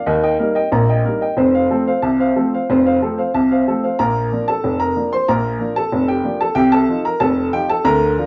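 The recording has a wet studio reverb that lends the room a short, lingering glow, and the listener seems placed further back in the space. It's a brief ragtime piano excerpt in Bb major, moving at 93 BPM in 2/4 with a straight, playful and lively feel. A solo upright piano carries the whole 8.3 seconds, its woody, natural tone sitting up front with a long sustain and spanning from F1 up to C6. The harmony moves from Eb to F, then settles on Bb at 4.0 seconds before reaching F7/C at 6.6 seconds. The passage is clipped from a longer piece, so it opens and breaks off mid-flow.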